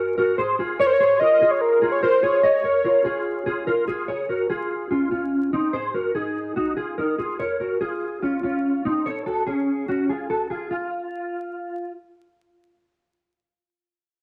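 A straight 4/4 pulse carries this bright, nostalgic indie pop fragment, where a mellow, clean, compressed electric guitar plays fingered arpeggios up front with ensemble chorus from 0.0 to 11.9 seconds, joined between 0.8 and 3.7 seconds by a velvety, detuned sawtooth synth lead carrying a sustained melody with vibrato, chorus and slapback echo, the whole dark mix sitting in a wet club reverb flecked with vinyl crackle.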